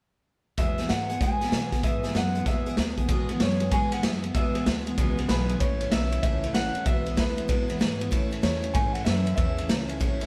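Rockabilly at 191 BPM in E major, rowdy and rollicking, with a swung eighth-note feel and the whole band playing live together in a stone room with moderate reverb, heard as a short cut from a longer piece. A twangy, slightly broken-up electric guitar through a small old amp carries the melody until 9.7 seconds, over a bright, full-bodied picked dreadnought acoustic guitar and a woody, thumpy pizzicato upright bass on gut strings. The saturated, gritty garage drum kit sits up front with a punchy kick, dark cymbals and a pumping small-room sound, as the harmony moves between E and A.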